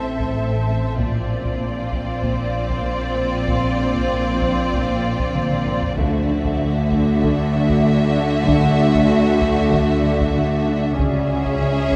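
A straight 4/4 pulse at 96 BPM is set by heavy-stick taiko drums sitting in the background from 0.2 s, with a fill at 5.4 s, in this uneasy, ominous fragment of a cinematic suspense score that moves from A minor through Bbadd9 and Dadd9 to C#m. Lush bowed strings carry it: a rich violin section sings the high melody over a clearer second violin line, a smooth viola section accompanies, a very quiet, woody cello section plays a dark riff, and a close double bass section joins a second, even cello section on the bass. Beneath them sit a mellow, evolving organ-like pad with a moving notch and a calm, detuned organ-like drone, both softened by ensemble chorus, all within a recital hall reverb of 1.5 s and a dark production.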